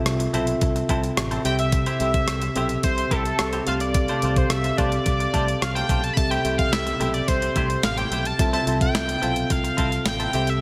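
An octave-doubled lead stands out from 1.5 s, bold and bright up front, its detuned sawtooth and triangle tones edged with ring modulation, a fast attack, long sustain, vibrato and chorus as it carries the melody. This is a nostalgic, glossy slice of 1980s-style pop at 108 BPM in a straight 4/4, cut from a longer piece. A mellow tine electric piano opens the track and supplies clean accompaniment, while a dark, round fretless electric bass holds the low end. A clean 12-bit digital drum machine with a thumpy kick, medium-tuned snare, rim click and hi-hat sits up front, its sampler-style sound tape-warmed and re-recorded in a large room. A twangy, compressed, fingered electric guitar adds a quieter riff touched by subtle chorus and delay. The harmony moves from Fmaj7 through Am7/C, G9sus4/C and C6 before returning to Fmaj7 at 8.4 s, all set in a lush hall reverb with a sparkling digital production sheen.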